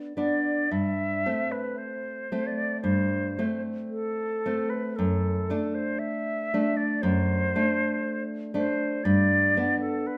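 Tender and lyrical, this brief excerpt from a longer romantic duo drifts in free rubato at 54-60 BPM in 4/4, with a full-bodied, fingerpicked nylon-string guitar laying down accompaniment from the start over chords moving from G through Am7/G and D/F# back to G, while an airy, close-miked concert flute enters at 0.2 seconds to sing an expressive melody with vibrato and a soft attack, both instruments up front in a moderate recital hall reverb.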